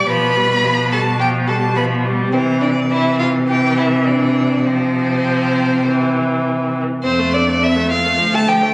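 A clear, smooth bowed cello carries the bass up front beneath a rich, expressive first violin melody full of vibrato and portamento, with a focused second violin line and viola accompaniment, in this spirited, graceful classical-period string quartet movement in F major, tuned to A4 = 436 Hz, moving at a quick 104 BPM in a rubato 4/4 and shifting to a new section at 7.0 seconds, captured on a phone in a recital hall with moderate reverb, added club reverb and compression, and cut from a longer piece.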